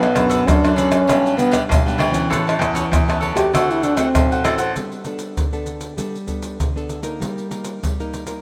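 Lively and playful, this short cut from a longer samba and choro piece opens with a mellow, breathy trombone carrying the melody in a jazz style, its light vibrato captured close to the microphone as it takes a solo through the first 4.8 seconds. Beneath it, a crisp picked cavaquinho and a small, fingerpicked nylon-string guitar share the accompaniment, while a brilliant baby grand piano with short sustain supplies the bass line in its low register. Maracas, pandeiro, tamborim and a tight surdo sit up front with hard hands and the feel of a small room. The harmony moves from Bm7 through G/B and Aadd9 to D7, then shifts to Gadd9 and Eb/G in the second section. The trombone, cavaquinho and piano stop at about the same moment, leaving guitar and percussion to carry on until 8.4 seconds. A lush hall reverb surrounds the rough home-demo mix.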